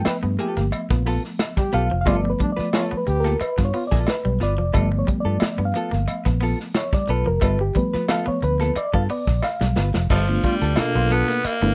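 A gritty, playful funk groove at 90 BPM in G mixolydian opens on a G9 from a mellow, reedy electric piano with fast tremolo that solos in stabs until 10.1 seconds, over a round, foam-muted bass, a tight-kicked soul drum kit with dark cymbals, metallic cowbell, a dark, compressed hollow-body jazz guitar, a twangy, slightly broken-up electric guitar riff and a breathy trombone second line, before a drum fill leads at 10.1 seconds to a raspy, forceful alto saxophone melody up front.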